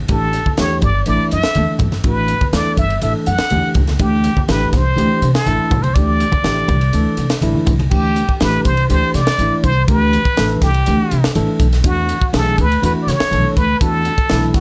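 An intense, slick stretch of electric jazz fusion, cut from a longer piece, moves through suspended chords over a straight 4/4 feel, led by an up-front plunger-muted trumpet solo with a brilliant, wah-wah bite and plate reverb. A woody, growly pizzicato upright bass and a bell-like, clean tine electric piano support it, while a crisp, punchy drum kit with a high-tuned snare pumps in a small room. Low-tuned, ringing congas played with soft hands sit in the background until 7.9 seconds, all within a dark production with light reverb.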